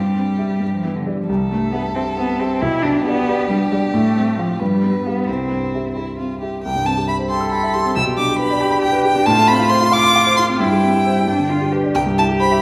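Violin, cello and grand piano all begin together at 0.0 seconds in this quick, spirited classical-period movement for piano trio, a graceful passage in C major cut from a longer piece. It moves at 90 beats per minute, counted in dotted quarters in a straight 6/8, and the harmony moves through C, G and F chords, including a G7 near 4.6 seconds. A single bowed violin carries the melody up front, its tone rich and focused with vibrato as it ranges high into the upper register. The cello plays a second line from a more distant position, a warm and expressive voice using vibrato and portamento. The grand piano supplies the accompaniment close by with an intimate, natural sound, and its action noise is audible beneath the notes. A wet reverb, as in a church or concert hall, surrounds the trio, and a new section begins at 6.6 seconds before the passage closes on C at 12.0 seconds.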